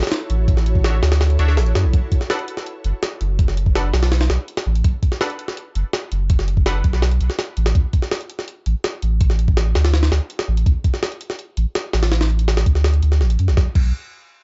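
A straight 4/4 groove at 165 BPM drives this raw, frenetic drum and bass and jungle cut in B minor, where a gritty, pitched-up sampler kit of thumpy kick, high-tuned snare, hi-hat and crash sits up front in studio reverb, its kick dropping out at 1.2 s before a deep, thick, saturated sub bass takes on a filter sweep from 1.9 s, while a quieter, nasal, detuned sawtooth chord stab with chorus and dub echo runs until 6.8 s, all within a dark, dry production.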